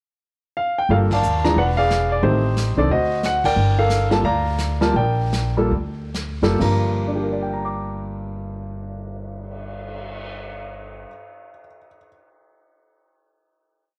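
A warm grand piano leads this short, smoky late-night jazz trio piece in G minor, stating a motif-based melody over syncopated drop-2 comping from a brief pickup, with a woody, thumpy pizzicato upright bass playing in two and a vintage brush kit of dark cymbals, snare sweeps and a tight kick sitting mid-forward in the mix. Swung at 126-180 BPM, the band hits accents at 1.1 and 3.4 seconds and moves through a moody minor progression, then slows down from 3.6 seconds before settling onto a held final chord at 6.6 seconds. Light reverb gives the trio an intimate small-room feel.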